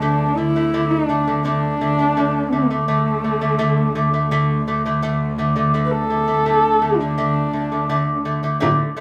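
In a straight 4/4, this short cut from a longer Mongolian folk piece feels proud and galloping. A dark, husky horsehead fiddle carries the melody up front with vibrato and portamento, while a delicate, fingerpicked lute with doubled gut strings plays arpeggios beside it over a biting, nasal cello drone. The band plays live together in a studio room with wet reverb, and a small frame drum struck with hard hands enters only at 8.6 seconds.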